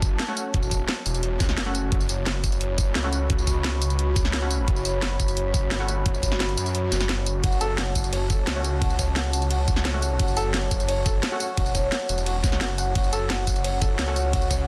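A straight, driving pulse of knocking electronic kick and cracking snare with bright hats, ride, and tambourine propels this tense, futuristic dark technical drum and bass excerpt, where a thick, saturated detuned saw bass sits up front beneath a moody, pumping analog pad with chorus and phaser, and punchy, nasal orchestra-hit-like stabs echo through dub delay; after the kick drops out from 6.7 to 7.4 seconds, a soft, felt-muted upright piano with audible action noise enters with arpeggios, all under a dense, heavily limited modern master.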